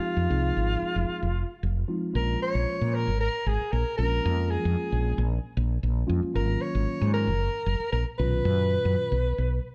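A breathy soprano saxophone with subtone, vibrato and tape echo carries the melody through this slick, driving jazz excerpt in Bb phrygian at 114 BPM, over a mellow, clean tine electric piano treated with phaser and a woody, round, punchy fretless electric bass that sits up front from 0.2 seconds, as the harmony moves from Fm7 through Bbm7 and Ab13sus4 to Bmaj9#11 in a dark production with light reverb.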